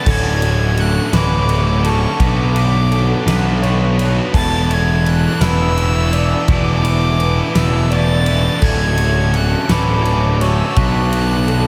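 Opening at once, a reedy, gut-string violin sings a high melody over twangy, slightly broken-up guitar arpeggios, with a double-tracked overdriven stack guitar riff up front, a fuzzed bass and a huge arena drum kit with a fat snare and bright cymbals joining at 0.1 seconds. This cinematic, soaring post-rock excerpt moves slowly at 56 BPM in 6/8 in D major, drifting through Dmaj7, Bm7 and a long E7sus4, with tape echo on the violin and the small-amp guitar and analog chorus on the riff. At 4.3 seconds a mellow brass ensemble adds sustained chords in the background, all bathed in a dreamy, reverb-soaked hall.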